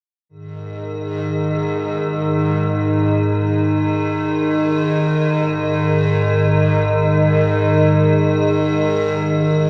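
Meditative and haunting, this short excerpt of free-time world meditation music, tuned to A4 = 436 Hz, is carried by a single icy glass pad that sounds alone from 0.4 to 9.7 seconds, held between G#2 and D#3. Its crystalline, detuned tone blends sine and sawtooth layers with a breath of noise and ring modulation, opening slowly, sustaining long and releasing gradually, with chorus, built-in reverb and tape echo keeping it bright and up front. A church-like reverb with a 3.2-second tail surrounds the pad in a dark, warm production.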